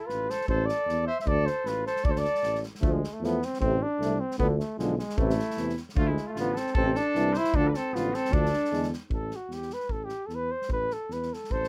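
This dry excerpt of a Balkan brass band folk tune moves restlessly and bittersweetly at 153 BPM in a swung 2/4, in D dorian sharp4. A mellow flugelhorn carries the melody up front over a dark, smooth-topped tuba bass and an acoustic drum kit with a punchy kick and a medium-tuned snare played with bundle sticks, while a distant trumpet with light vibrato adds a second line in short stretches. From 2.8 to 8.9 s a very quiet trombone and a roomy euphonium in the background fill in accompaniment over Dm and Am chords, and an E7 leads into a new section at 9.1 s.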